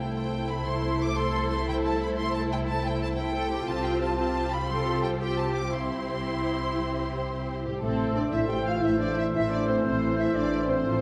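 Triumphant and adventurous, this cinematic excerpt in 12/8 at 118 BPM opens in C major with a lush violin melody, a second violin line, rich viola accompaniment, ringing harp arpeggios in the background and dark bowed double basses, with cellos joining at 0.7 s, then turns to A minor at 7.8 s as mellow close-miked French horns, background trombones, clear distant trumpet stabs, a very quiet silvery flute, a close-miked cor anglais and a distant clarinet enter, all within a wet scoring-stage reverb.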